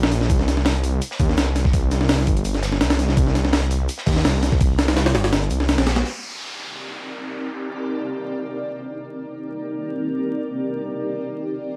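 Nostalgic and dark, this drum and bass and jungle excerpt opens on an up-front, pitched-up, compressed sampler-style breakbeat kit with a thumpy kick and high-tuned snare, alongside a thick, beating, menacing detuned saw bass. Behind them sits a saturated acoustic breakbeat kit with a rolled-off top. At 6.0 s the kits and bass stop as an electronic downlifter sounds, and from 6.8 s a cloudy, evolving granular pad holds mellow chords in its own reverb, all set in a small room with gritty hardware character and vinyl crackle.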